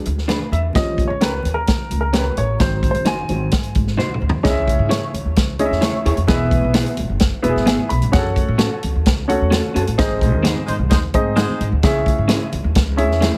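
An intimate, up-front baby grand piano, its action noise audible, leads off with a short solo in this urgent, driving fragment of uptempo 1960s-style soul, as a punchy small-room vintage drum kit, a woody, thumpy pizzicato upright bass, faint bright congas and slightly broken-up electric guitar stabs touched with spring reverb carry it forward, while a loose jazz-style horn section adds a brief second line at 10.7 seconds during a band accent, all under a heavily compressed radio sound.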